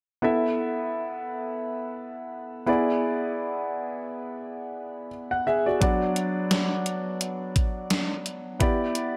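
A warm concert grand piano opens this glossy, nostalgic 1980s-style pop fragment, its intimate, up-front sound carrying audible action noise and deep bass beneath a shimmer reverb as it moves through Asus2, E7, Bm/F# and G6 with a light sixteenth-note swing. At 5.8 seconds a gated 80s digital drum machine joins with hi-hat, a thumpy kick and a gated-reverb snare, its overdriven, sampler-style tone re-recorded in a small room and placed up front. A moderate plate reverb gives the short passage a sheen that fits its era.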